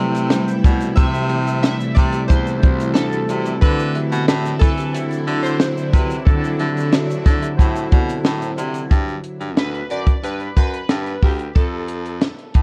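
This laid-back, nostalgic bedroom-pop excerpt opens with glossy, chorused retro synth keys carrying the melody over a soft, woody kalimba line, a dark, slightly broken-up electric guitar, a gritty, barky tine electric piano tucked in the background and a very quiet, shimmering ambient pad holding sustained chords, while a bright baritone saxophone with vibrato plays the bass. A compact cocktail drum kit, dry and up front with a punchy kick and high-tuned snare, is joined by a faint, grainy egg shaker to supply the beat, all set in light small-room reverb with a cassette-tape character. By 9.5 seconds the kalimba, guitar, electric piano, pad and shaker have dropped out as the harmony moves on, leaving the synth, saxophone and drums to carry the final bars to 12.6 seconds.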